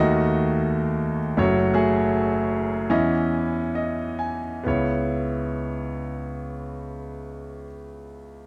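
A clear, natural grand piano plays alone and up front in this intimate, melancholic folk excerpt in C# minor, slowing through its opening 4.7 seconds within a straight 4/4 at 64-88 BPM, moving from D#dim through F#m and C#madd9/E to settle on C#m7, its range spanning F#1 to G#5, caught by close, detailed microphones in light reverb and tuned to A4 = 442 Hz.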